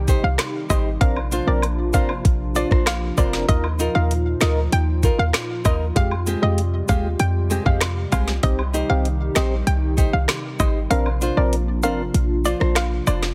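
A knocking, up-front electronic drum kit with a woody snare and metallic hats drives this bouncy, sultry dancehall excerpt at 97 BPM, alongside a punchy, tight 808-style bass, a small, boxy fingerpicked nylon-string guitar playing arpeggios, faint cabasa and woodblock, a nasal, detuned square pluck melody with chorus and digital delay, a dark, organ-like percussive stab with chorus, and a hollow, flute-like pad with chorus, phaser and sidechain pumping sustaining chords over Cm, Bbadd9, Ebsus2 and Fmadd9, all under a heavily compressed radio-style sound, until the kick drops out at 10.9 s.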